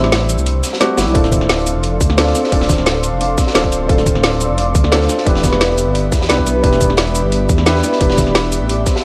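Liquid drum and bass in a lush, soulful mood, cut from a longer piece. It opens with a short break where a dark, worn grand piano with audible action noise, sampler grit and tape echo, and a ringing, thumb-plucked concert harp with tape echo move through Am7 to Dm7 over a deep, rumbling detuned saw bass up front, a drum and bass kit with a woody snare and metallic hats, and a saturated, gritty breakbeat kit filtered into the background. At 1.2 seconds a tight electronic kick and an airy, breathy pad with chorus and sidechain pumping enter, joined by warm congas at 1.3 seconds, before the harmony shifts to Em7 under light reverb.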